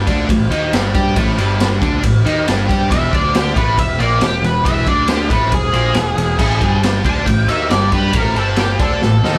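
A gritty, live-in-one-room sound with light reverb opens this short cut from a longer blues rock and southern rock power-trio track, moving at a straight 138 BPM in 4/4 with a swaggering mood. An overdriven, double-tracked electric guitar plays the riff up front from the start, beside a bright, punchy fuzz bass, while a raw garage drum kit enters at 0.1 seconds with saturated, pumping small-room character, dark cymbals, a punchy kick, a medium-tuned snare and toms. At 2.9 seconds an octave-fuzz lead guitar, colored by wah and distortion, begins a solo that runs to the end of the clip. The harmony shifts from a D#maj7#11/G colour to E and then Gsus2, and a drum fill closes things out from 9.0 seconds.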